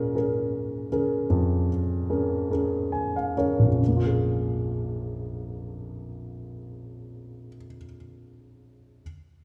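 The recording sits in a wet, resonant concert hall whose long reverb tail hangs around every note, yet the grand piano stays close and up front, with its action noise clearly audible. This short excerpt from a longer folk piece is reflective and melancholic, unfolding in a lilting 6/8 with a straight feel. The piano carries the accompaniment alone from 0.0 to 9.0 seconds, ranging from deep bass notes up into its upper register. Its tone is warm, intimate and natural, giving the playing a private, close-at-hand quality against the spacious room. The music slows over the opening passage until about 3.8 seconds, when a second section begins and runs to 6.5 seconds.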